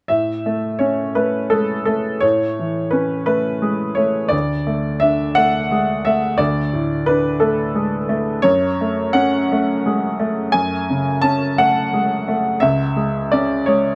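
Reflective and wistful, this short excerpt of neoclassical minimalist piano drifts at a rubato 57 BPM in 6/8, with a worn, woody, slightly detuned upright piano playing solo from 0.1 to 13.9 seconds, ranging from low C#2 to A5 over chords of A, D, F#madd9 and C#m, captured by close, detailed microphones in a dry room that keeps the instrument up front.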